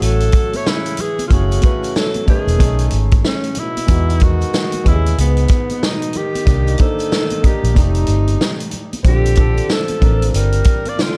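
A studio reverb surrounds this cool, nocturnal jazz-hop clip, cut from a longer piece, where an up-front vintage drum kit with a punchy kick and a rolled-off top sits beside a round, foam-muted electric bass in a swung hip hop groove. A warm alto saxophone carries the melody with vibrato, subtone and scooped notes, while a breathy, whispered tenor saxophone plays a lower second line, distant and roomy in the background. A dark, woody upright piano with audible action noise plays accompaniment over extended jazz chords, very quiet maracas and congas add soft-handed colour, and the bass stops at 10.6 s.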